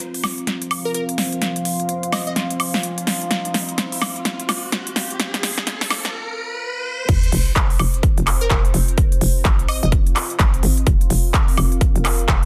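Swaggering and bouncy, this bass house excerpt at 127 BPM with a swung 16th feel rides a build-up of an overdriven big-room drum kit with crisp hats, claps, snare, woodblock and crash, a rising sound effect, a moody chorused and phased analog pad, a deep wave-folded ambient pad in the background and a brief phrase of a catchy, detuned plucky unison lead with dub echo. The drop at 7.1 seconds then lands a punchy overdriven kick and a hollow, knocking FM bass that pumps, both up front in a dense, heavily limited mix, and the lead returns shortly after.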